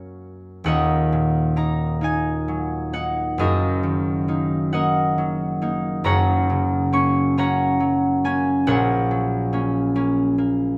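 Graceful and dreamy, this classical excerpt for solo concert harp drifts in Eb minor at a slow 45 BPM in a rubato 6/8, its warm, ringing, fingerpicked tone sitting up front through close, detailed microphones while a moderate scoring-stage reverb lets chords move from Ebm to Gb and settle on Gb/Bb at 8.7 seconds across a range reaching from deep Eb1 to a bright Db6.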